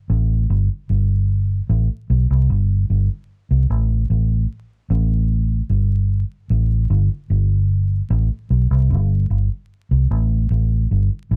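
A vintage, foam-muted, fingered electric bass plays alone from 0.1 to 11.4 seconds, dark, round and punchy up front between G1 and C2, in this serious, laid-back reggae excerpt at 75 BPM in A minor, caught in a dry, close 1970s-style studio sound with light reverb and vinyl crackle.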